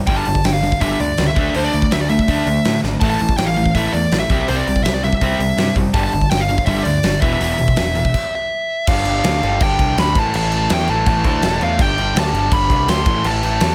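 Lightly reverberant and raw, this urgent punk rock excerpt puts a big acoustic drum kit up front, its fat snare, punchy kick, hi-hat and crash ringing in a bright stone room, with a fill at 2.8 seconds. A compressed, distorted electric guitar and a crunchy, overdriven guitar tucked in the background pound out picked riffs, while a growling, overdriven picked bass digs in underneath and a smooth, dark overdriven lead guitar carries the melody up front. The band stops at 8.1 seconds, and the crunchy guitar drops out for good before the rest crash into a new section at 8.9 seconds.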